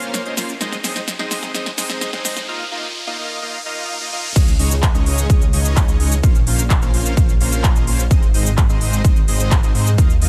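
A straight 4/4 pulse at 128 BPM drives this triumphant, euphoric slice of festival progressive house in Db major, cut from a longer piece. It opens on a build-up in which the big-room dance drum kit plays a fill over its first 2.5 seconds, with crisp hats, a punchy snare, handclaps, shaker and crash cymbal, all given an overdriven edge. Alongside it, a huge, dense supersaw riff pumps against the sidechain and trails a digital delay, while an electronic riser climbs in from 0.6 seconds as the harmony moves through Bbmadd9, Ab and Ebsus2. The drop lands at 4.4 seconds, bringing in a punchy, overdriven electronic kick up front and a thick, lush detuned saw bass, chorused and tube-saturated, that pumps with the sidechain under a cycle of Dbsus2, Bbmadd9 and Ab. The mix is dry and loud, with a high-pass filter thinning the bottom and lossy compression artefacts audible in the sound.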